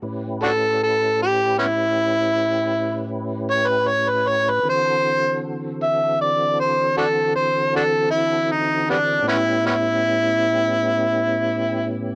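A round, dark tonewheel organ opens with sustained chords through chorus vibrato and a slow rotary speaker, and at 0.4 seconds an amplified, gritty harmonica takes an up-front, jazz-style solo with tongue slaps, scooped notes and light vibrato over A9, D9 and back to A9 in this laid-back, soulful 12/8 blues excerpt in A mixolydian at 52 BPM, captured in a dry, close 1970s-style studio sound with tape saturation and light reverb.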